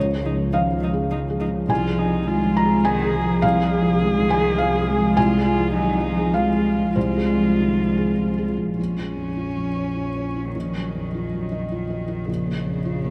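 Neoclassical piano and strings in Bb minor, this longing, melancholic fragment moves in a rubato 3/4 around 103 BPM, its felt-muted upright piano sitting up front with a soft, mellow, intimate tone and audible action noise from the thick felt. A dark, close cello carries a second line with vibrato and a smooth top, while a woody solo viola adds sul tasto accompaniment until 8.5 s and a single bowed double bass floats underneath with a pure, gentle attack. The strings and piano sit in a vast, echoing cathedral reverb, and the harmony drifts from Dbadd9 and Fm/C to Bbm at 8.8 s before coming to rest on Bbm again.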